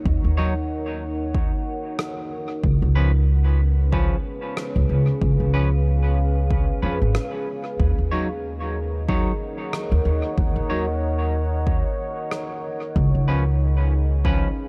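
A dark, reverberant studio sound frames this deep, spacious slice of ambient dub, cut from a longer piece and carrying a gentle swing. A moody pad of detuned sawtooth and sine voices with a sub octave holds sustained chords from the start, its slow attack and long release softened by chorus and its own reverb. Up front, a woody, thumpy pizzicato upright bass sits beside a punchy, layered electronic kick drum, while a bright, clean semi-hollow electric guitar places picked stabs drenched in lush chorus and dub echo. A rim click with a big-room character, also carrying dub echo, joins at 2.0 s and stops at 12.5 s. The harmony moves between Ebm7 and Db7 throughout.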